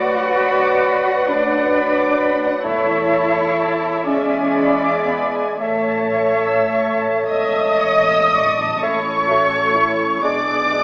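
Muted, veiled violins carry the melody in this slow, lyrical and serene romantic orchestral movement in A major, moving in a rubato 6/8 at about 34-45 BPM, while an airy flute, a mellow clarinet and a second, backgrounded violin line add upper voices. Beneath them, violas and a punchy, close-miked bassoon fill the middle, a distant French horn section holds sustained chords, and dark cellos with quiet double basses supply the bass. Round, soft-mallet timpani come in at 2.6 seconds, very quiet, roomy trumpets add stabs from 7.3 seconds, and the whole passage sits in a wet scoring-stage reverb colored by vinyl crackle and a small-speaker sound.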